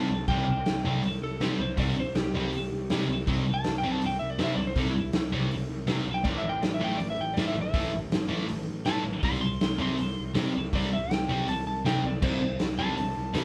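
Garage rock at 161 BPM in a straight 4/4, menacing and swaggering, with a slightly broken-up electric slide guitar soloing from E4 to C6 across the whole 13.4-second excerpt. Beneath it a thick, double-tracked fuzz guitar drives a distorted riff up front, a growly overdriven picked bass holds the low end, and a raw garage drum kit enters at 0.3 s with a tight kick, medium-tuned snare, hi-hat and crash, sounding gritty and saturated with a rolled-off top. The band plays live in one room with a wet studio reverb, and the chords move from C5 to A5 at 6.3 s and back to C5 at 9.2 s.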